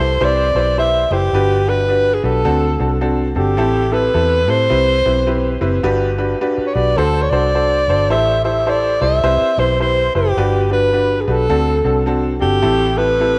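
From the first moment, a breathy alto saxophone carries the melody over upright piano and electric bass in this joyful, danceable slice of uptempo 1960s-style soul. It moves at 106 BPM in 4/4 with a light swing on the eighth notes, in G major. The close-miked saxophone sounds whispered and intimate, with a soft attack and vibrato in a pop-style solo voice. The upright piano is woody and a little worn, slightly detuned and boxy with long sustain. Beneath it, a foam-muted, amped electric bass gives a dark, round foundation. All three sit up front in a moderate echo chamber, cycling through Cmaj7, Gmaj7, D7 and Am7 across this 13.4-second excerpt of a longer piece.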